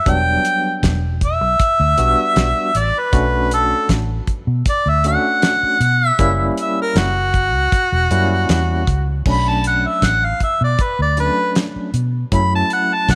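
Straight-eighth soul blues with a brooding, smoky mood, cut from a longer piece, where an up-front, overdriven harmonica carries a jazz-style solo from 0.0 seconds with vibrato, scooped notes and a smooth top. Beneath it, a bright, barky tine electric piano with light overdrive and medium tremolo sounds through a combo amp, while a vintage foam-muted fingered electric bass adds a dark, round, amped low end. A dry, airy, polished 70s drum kit sits up front with dark cymbals, a fat snare and a tight kick, all in light reverb and studio ambience as the chords move from Em9 through Bm9 and F#7b9 before returning to Bm9 at 9.3 seconds.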